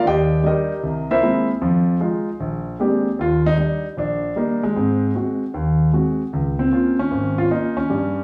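Playful and warm, this short solo jazz piece is cut from a longer performance and swings along at 153 BPM in 4/4 in Eb major. A grand piano carries everything alone for the full 8.2 seconds, ranging from a deep Ab1 up to G5. Its tone is intimate and natural, placed up front, with the audible noise of the action giving the playing a close, human presence. The opening passage runs through Ebmaj7, C7alt, Fm7 and Bb13 before a new section begins at 3.2 seconds, returning to Ebmaj7 and moving on to Ab7 and Db6. A wet small-room reverb with a short decay surrounds the piano, lending the feel of a live performance in one room.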